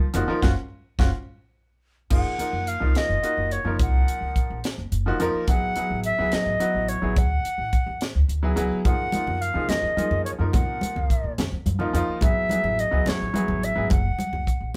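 A pure, straight-toned concert flute carries the soaring melody from 2.1 s in this funky electric jazz fusion excerpt at 71 BPM in a straight 6/8, accompanied by a clear, short-sustained baby grand piano that adds a brief fill before the flute enters, a woody, thumpy pizzicato upright bass, a dry tight funk drum kit with a high-tuned snare up front, and thick-skinned, saturated congas in the background that drop out after 1.1 s and return at 8.9 s, as the band plays live in one room with light reverb and faint mains hum over chords moving from Gbmaj7 through Amaj7sus2 and Dadd9 to Gbmaj9, Amaj9 and Gb.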